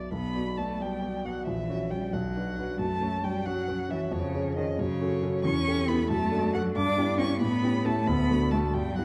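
A dark recording with lossy compression artefacts sits in the long, wet reverb of a scoring stage, in this brief cut from a quick classical-period movement for piano trio. The mood is graceful and cheerful, moving at 91 beats per minute in dotted quarters in a straight 6/8, beginning in B minor and settling into D major at 5.4 s. A mellow, smooth grand piano with a vintage character and long sustain sits up front as the accompaniment, spanning from deep bass into the middle register. The solo bowed violin, woody and close, carries the melody high in its range with vibrato and portamento, while the single bowed cello enters at 0.1 s with an expressive second line, its soft attack and smooth top colored by vibrato and gliding portamento. The harmony moves from B minor through F-sharp minor before an A7 leads through D/F#, Em7/G and A7 to arrive on D.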